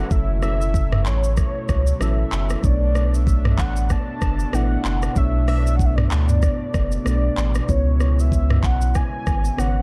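A short, smooth and sultry afrobeats passage in B dorian at 95 BPM opens with a velvety synth lead, mellow electric-piano-like keys, a vintage analog pad and a deep sub bass all sounding together. An electronic afro-pop drum kit enters at 0.1 s, with a knocking kick, metallic hi-hats, handclaps, rim clicks, shaker and toms riding a 16th-note swing. The lead carries the melody in a high register with a detuned sawtooth unison, chorus, vibrato and portamento, while the gentle, warbling keys supply chorused accompaniment over F#m7, Bm9 and C#m7 chords. The round sine sub bass and the drums sit up front, with the drums carrying the sense of a large room. The smooth, detuned pad holds sustained chords under a lush chorus in the background, and the production stays dark and dry overall.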